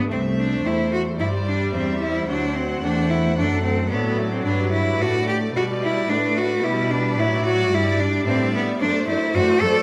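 This festive, lively excerpt from a baroque-style concerto movement moves at a straight 110 BPM in 4/4, set in G major and cut from a longer piece. A bright, intense solo cello carries the melody up front from the start, while a delicate, very quiet fingerpicked lute with double nylon strings accompanies beneath it. A rich chamber viola section adds smooth, even accompaniment from a distance, and from 0.1 seconds a dark, close cello section supplies an intimate, soft-attack bass. Two rich chamber violin sections join at 0.1 seconds: one plays a background melody with vibrato, and the other carries an expressive second line with portamento. The harmony moves from C through D7 to G, reaching D7/F# at 8.8 seconds, all within a wet recital hall reverb.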